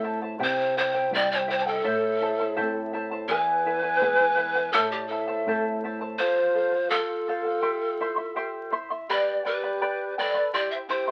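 Festive and earthy, this short cut from a longer Andean folk piece moves at 83 BPM in a straight 2/4 in A minor, heard through the crackle of a very old 78 rpm record with light reverb. A breathy bamboo pan flute carries the melody up front with vibrato and a chiffy, crisp attack, while a large end-blown wooden quena adds a straight-toned second line with lifted highs, both slightly unsteady. A mellow, shimmering fingerpicked charango with double strings sits forward in the accompaniment, joined by a dark, boxy thumb-plucked flamenco guitar with finger squeak until it stops at 6.2 seconds, where the harmony shifts from C, Am and E toward F, C and G.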